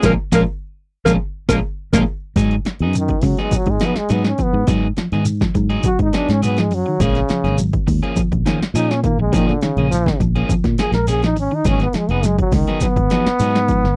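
A brief band accent opens this intense, funky afrobeat cut from a longer piece, with a bright alto saxophone carrying the melody over an edgy, forceful tenor saxophone in the background and a worn, slightly out-of-tune tine electric piano treated with light overdrive and lush chorus. The horns and electric piano fall away at 2.0 seconds. Underneath, a punchy analog drum machine sits up front with kick, snare and hi-hat, joined by a grainy, dry shekere and a round, foam-muted fingered bass. Two electric guitars fill out the groove: a dark, clean one playing fingered arpeggios in the background, and a slightly broken-up picked one adding stabs. From 3.0 seconds a clear trombone takes a pop-style solo up front, with vibrato and scooped notes, over chords moving between A#m7 and G#m7. The sound is that of a close 1970s-style studio with light reverb.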